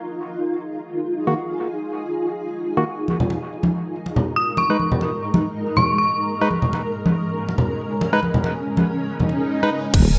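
Swung, half-time at 140 BPM, this meditative, cavernous deep dubstep fragment opens on a blurred, evolving granular cloud pad with ensemble chorus, joined at 1.3 seconds by a hollow, organ-like percussive stab with dub echo, both under filter sweeps, before ringing acoustic congas enter at 3.1 seconds and an eerie, inharmonic detuned synth bell with tremolo adds a brief high melody at 4.4 seconds, all in moderate plate reverb with a bright 1980s-style digital sheen, until an electronic swell rises from 9.2 seconds into an impact at 9.9 seconds that lands on a deep, soft wobble bass with tube saturation, a tight overdriven electronic kick, and a garage kit's filtered crash and hi-hat.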